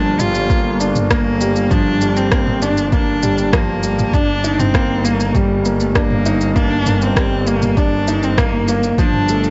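A dark, expressive solo cello with vibrato and portamento carries the melody over a mellow, woody upright piano riff with tape echo and a bright, distant bowed double bass section pumping on a low G, as this hypnotic, melancholic piano-and-strings electronica cut moves at 99 BPM from Gm7 to Ebmaj7/G, joined by a deep house kit of rim click, shaker and toms at 0.2 seconds and a deep electronic kick at 0.5 seconds, both overdriven, in a light studio reverb with a softened top end.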